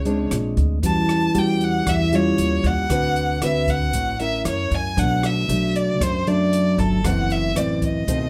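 Wistful and smooth, this short bossa nova fragment, cut from a longer piece, moves in a straight 4/4. A rich, bowed violin carries the melody, a single player with even vibrato who sits up front in the blend yet has a faintly distant quality. Beneath it, an up-front nylon-string guitar gives classical-style accompaniment, thumb-plucked and warm, with audible finger squeak. A pizzicato upright bass adds a woody, dark foundation, while an open jazz drum kit, entering at 0.1 seconds, keeps time with hi-hat, rim click and a boomy kick in an airy, polished small-room sound. The harmony drifts through colourful chords such as A#9, D13, Bm7 and F#m7b5, captured with close, detailed microphones and light reverb.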